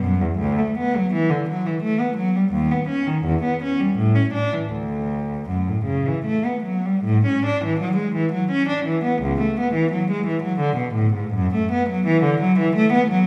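Serene and dance-like, this excerpt from a baroque-style classical suite movement in 3/4 features a single rich, expressive bowed cello playing alone with vibrato and portamento at a flexible 72-90 BPM, moving from D major to A major at 7.1 seconds, set up front yet heard from further back in a recital hall with a wet reverb.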